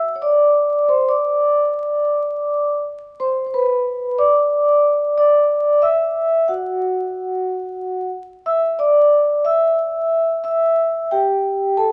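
Cool and relaxed, this hip hop excerpt moves at 91 BPM in 4/4 with a 60% swing on the sixteenths. A lone vibraphone played with soft mallets carries the whole 11.9 seconds, ranging from F#4 up to E6. Its tone is mellow and ringing with a slow motor vibrato, and it sits up front in a vintage, band-limited sound. The harmony drifts through open suspended chords, from Dsus2 and Csus2 to Esus2 and finally Gsus2, with brief stretches of bare, unharmonized playing. Vinyl crackle and a light, small-room reverb give the recording a dusty, intimate character.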